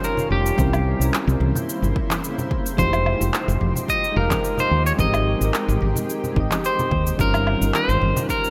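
Lightly reverberant and smooth, this short excerpt of sunset chillout in F minor moves at 109 BPM with a gentle 16th-note swing over chords such as Fm9 and Abmaj7. An up-front, slightly broken-up electric guitar carries a twangy melody through digital delay and shimmer reverb, while mellow, chorused electric-piano-like synth keys accompany and an ethereal, octave-up shimmering pad holds sustained chords in the background. A round, dark fretless bass enters at 0.3 seconds, a punchy overdriven electronic kick joins at 0.6 seconds, and overdriven electronic cabasa, woodblock and handclaps sit alongside bright, soft-handed congas.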